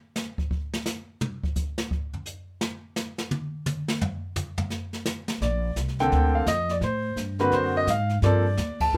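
A brushed drum kit with dark cymbals and a boomy kick opens this swinging jazz piano trio with a solo until 5.4 s, when a clear, long-sustaining grand piano melody and a woody, growly pizzicato upright bass enter over warm chords moving from Bbmaj9 through Gsus4 and Daug7 to Gm11, all set in light reverb before a band accent at 8.8 s.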